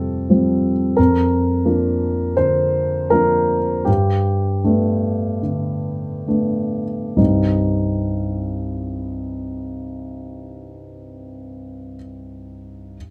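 A dark concert grand piano carries this intimate, melancholic neoclassical minimalist fragment on its own from 0.0 to 13.0 seconds, sitting up front and spanning C2 to C5. Its tone is mellow, with deep bass and long sustain that let each chord ring. In 4/4 and C dorian, the rubato pulse moves between 64 and 89 BPM, and the opening passage slows down through its first 7.2 seconds. The harmony moves from Fadd9 to Bb/F and Gadd9 before settling on Cm at 7.2 seconds, where a second passage begins. A moderate studio reverb and a live, single-room recording give the piano a close, natural space, and the clip is cut from a longer piece.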